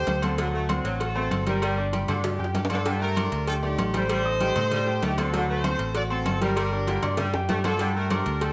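A warm, close-miked horn section carries the melody over bright concert grand piano and a round, punchy fingered electric bass up front, as congas, tight cowbell and bongos, and ringing timbales and agogo bells enter in the background alongside a clear, distant saxophone section on a second line, giving this fiery, danceable salsa excerpt a roomy studio sheen with drum fills at 2.2 and 6.9 seconds.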